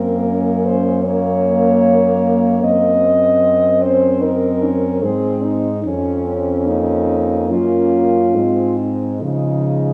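Warm and serene, this brief passage from a lyrical classical piece for horn quartet moves in a rubato 4/4 at 66-77 BPM: a mellow, vintage-toned French horn carries the melody up front, while a soft-attacked second horn and a vintage accompanying horn, each with light vibrato, sit in the background, and a distant, roomy bass horn with light vibrato stays forward, the four voices glowing in moderate recital hall reverb over harmony that travels from Gb to a closing Db.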